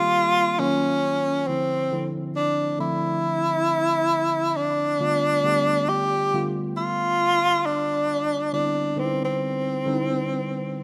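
This rough home demo carries light reverb and the ambience of a small room, and it is a short fragment cut from a longer R&B piece. A breathy tenor saxophone sits up front as the solo voice, carrying the melody in a jazz style with vibrato, soft attacks and scooped notes that lend a sensual, smooth mood. Beneath it, a tine electric piano plays accompaniment through a combo amp and a phaser, its worn, slightly out-of-tune tone clean and warm, and it sits well below the horn in the mix. Both parts play together for the full 10.8 seconds over a swung 4/4 feel. The harmony moves through lush extended chords, from Eb69 and Ebm9 to Dm9, then G9 at 5.0 seconds, before resolving to Cmaj9 at 8.5 seconds.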